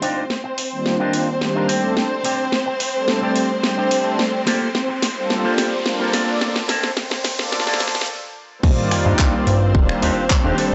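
A twangy, envelope-filtered electric guitar riff, wrapped in lush chorus and tape echo, rides a filter sweep through a sunny, feel-good nu-disco build-up at 108 BPM, over a house drum kit with a cracking snare, handclaps, finger snaps and hi-hat, a rich bowed string section with pumping sustained chords, and a smooth, detuned analog pad that enters at 0.7 seconds. A background riser climbs from 2.7 seconds to a brief stop, and at 8.6 seconds the drop lands on Ebmaj9 with an impact, a punchy, up-front electronic kick and a glossy, nasal chorused synth bass. The sound is dry and gritty with transformer saturation and light reverb, its top end rolled off.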